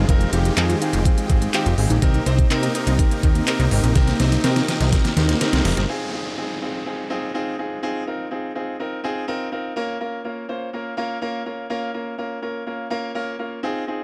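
A clear, open baby grand piano, pumping with the sidechain, accompanies this confident, driving dance-pop excerpt over huge, airy supersaw chords that also pump in the background, a very quiet, warbling unison pluck playing arpeggios, a punchy, funky analog bass that pumps too, and a smooth R&B kit with knocking kick, deep snare, hi-hat and handclaps that closes with a fill. These parts stop at 5.9 seconds as an electronic downlifter enters, and the piano carries on beside it, adding a fill of its own before continuing until 14.0 seconds in a dry, gritty mix.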